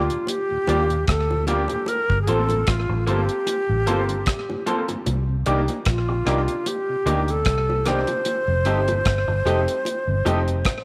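Lovers rock reggae with a smooth, longing mood, cut from a longer piece, where a breathy, hollow silver flute carries the melody up front with vibrato and tape echo over a round, foam-muted electric bass and a dry reggae drum kit with a tight kick and slapback echo, while a slightly broken-up guitar adds chorused stabs, a boxy grand piano with slapback echo and a very quiet rotary-speaker organ fill the background, and low-tuned bongos sit back in the mix.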